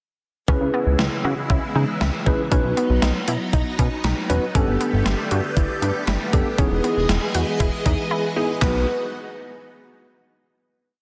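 A straight 4/4 drum-machine beat at 118 BPM drives this short, upbeat and bright synth-pop piece in B major, its thumpy kick, handclaps, hi-hat and gated-reverb snare sitting up front with a tape-warm, sampler-style character. A glossy, retro synth bass built from pulse and sawtooth waves, with pulse-width modulation and chorus, plays a sequenced line just as close, while a mellow tine electric piano pushes clean, closely voiced chords. Above them a vintage string machine holds swirling sustained pads through ensemble chorus and phaser, and a lush, detuned unison pluck repeats a delayed arpeggio ostinato further back. The harmony moves through C#m7, B, Gadd9 and Emaj7 before a brief silent gap from 8.1 s, then the parts land on a closing B chord at 8.6 s, with the drums stopping shortly after at 8.7 s. A moderate stage reverb surrounds the parts, and the master is dense and heavily limited.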